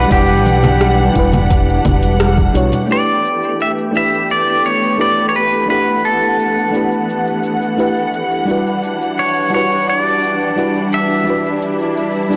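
This relaxed, sunny sunset chillout excerpt in G major at 86 BPM opens on Em9 with a bright, clean pedal steel guitar carrying the melody with slide and volume swells, over a soft, round FM electric piano with chorus and delay, dark, lush bowed strings behind a low-pass filter, and a punchy fretless bass that drops out at 2.7 s. An overdriven electronic kick and a deep house kit with metallic hats, cabasa, congas and rim click set the beat at 86 BPM, while very quiet acoustic bongos and congas play until 2.9 s, just after a band accent. From 2.9 s the harmony moves to G69 as a filter sweep runs across the strings before returning to Em9, and the recording carries a heavy plate reverb and a blown-out, overdriven sound.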